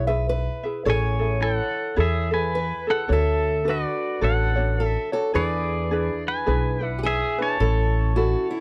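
Sunny and relaxed, this short Hawaiian excerpt swings gently at 107 BPM in A major, with a bright, twangy electric pedal steel guitar up front carrying the melody from 0.9 seconds in slide and volume swells, over a woody pizzicato upright bass, a light fingerpicked ukulele and a dark, boxy parlour acoustic guitar adding a fingerpicked second line, all captured in a dry, close 1970s-style studio sound with light reverb as the chords move from E through Amaj7, Dmaj7 and E7 to A.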